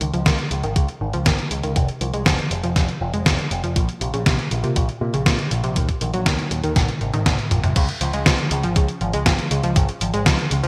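A thumpy, overdriven electronic kick drives this playful, danceable italo disco cut from a longer piece at 120 BPM in Db major, backed by a gritty, up-front sampler-style soul kit with a fat snare, crash, hi-hat and toms in small-room ambience and gated reverb, with a drum fill from 6.8 to 7.8 seconds. A punchy, envelope-filtered picked electric bass with tube saturation anchors the low end while a round, detuned analog pluck spins arpeggios through chorus and digital delay, its filter sweeping until 7.8 seconds, over chords moving from Dbsus2 through Bbsus2 and Abadd9 to a closing Db. The bright 1980s-style digital production sits in a lush hall reverb.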